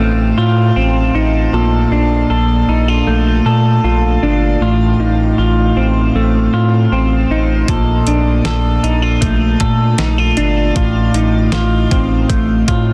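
Light digital ambience and a dense, heavily limited modern master give this short dream pop excerpt a close, polished sheen. The mood is dreamy and ethereal, set at 78 BPM in straight 4/4 in Bb major, tuned to A4 = 444 Hz. A clean, compressed electric guitar sits up front for the full 12.9 seconds, playing arpeggios through analog chorus and tape echo as the harmony moves between F7/A and Bbmaj7. Beneath it, a deep, thick, saturated sine sub bass plays sustained notes with a fast attack. At 7.7 seconds a detuned 8-bit digital drum machine enters with a thumpy kick, a medium-tuned snare and hi-hat. Its sampler-style hits carry a tape-warm grain from being re-recorded in a small room.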